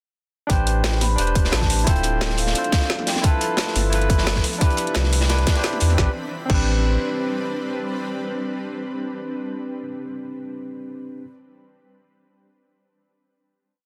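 Dense, heavily limited and lightly reverberant in a small room, this melancholic, soulful liquid drum and bass piece in A minor at 175 BPM bursts into a drop at 0.5 seconds, where a tight electronic kick, a rolling two-step kit with woody snare and metallic hats, and a gritty, saturated looped breakbeat drive beneath a round sine sub bass with long gliding notes; meanwhile a barky, lightly overdriven tine electric piano holds rootless chords with syncopated pushes, a dark soft-mallet vibraphone drifts through a free melody in the background with sampler grit and delay, and a detuned, granular shimmering pad with chorus and sidechain pumping enters at 1.8 seconds, before the music settles on a final Am11 chord at 6.0 seconds.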